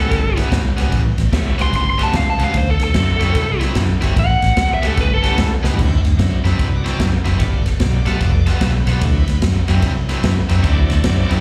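A swung 148 BPM shuffle in 4/4 drives this laid-back, gritty electric blues excerpt in D mixolydian, where a biting, overdriven lead guitar with slapback echo solos up front until about 5.5 seconds over a cranked stack guitar riff, a dark, foam-muted vintage bass, a punchy big-band drum kit that throws in a fill at 5.6 seconds, and a shouting tonewheel organ with key click and slow rotary speaker in the background, all heard live through a club PA as the chords move from A9 to D9 and G9.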